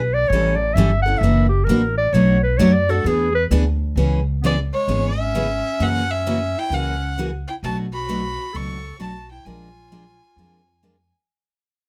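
A lively swing at 131 BPM in 4/4 drives this acoustic jazz manouche excerpt, with a thumpy, woody pizzicato upright bass and a bright, full-bodied picked steel-string guitar, finger squeak audible, comping through changes such as A7, Bm7 and E7. A clear clarinet with vibrato takes a jazz-style solo over the opening 4.0 seconds. A rich, biting violin carries the melody from 4.5 seconds, its airy bow and nasal, earthy tone sitting up front in light reverb as the recording fades out.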